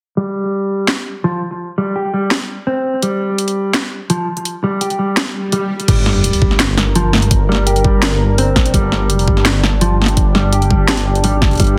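Heavily compressed into a radio-like sound with a moderate digital room reverb, this heavy, tense half-time drum and bass piece opens with a dark, clean, fingered electric guitar playing arpeggios through a low-pass filter sweep and digital delay, soon joined by an overdriven drum kit with a cracking snare and bright hats, before a background swell and sub drop lead into the drop at 5.9 seconds, where a knocking electronic kick and a deep, rumbling detuned saw bass arrive, followed by a moody, slow-attack ambient pad with chorus and sidechain pumping.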